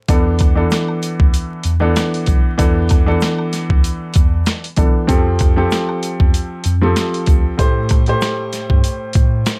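A boom-bap hip-hop groove opens at 0.1 s with a dark, woody upright piano up front, its vintage tone colored by cassette tape and a plate reverb, while a mellow tine electric piano carries the bass line beneath it. The sampler-style drum kit sits up front too, compressed and pitched down, with a gritty, thumpy kick, a medium-tuned snare and hi-hat swinging lightly on the 16ths at 96 BPM in 4/4. Far back in the mix, a close, dry tube shaker and woodblock add acoustic texture, along with a group handclap. The harmony moves from E7sus4 to Fadd9 at 5.1 s and settles on Am7 at 7.6 s, giving this short cut from a longer piece a dark, reflective mood. Vinyl crackle runs throughout, and the overall sound is dry.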